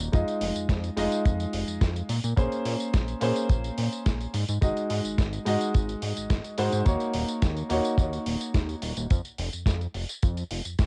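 Cosmic and sensual, this nu-disco excerpt at 107 BPM sets an up-front baby grand piano, pumping and tape-echoed with a cassette haze, over Fm7, Bbm9, Ab7(no3) and Ebm7 chords until it stops at 9.1 seconds, while a glossy, chorused synth bass, a gritty, overdriven sampler-style kit of hi-hat, medium-tuned snare and tambourine, and a dry, dark, tight kick carry on to the end in a lightly reverberant home-cassette sound.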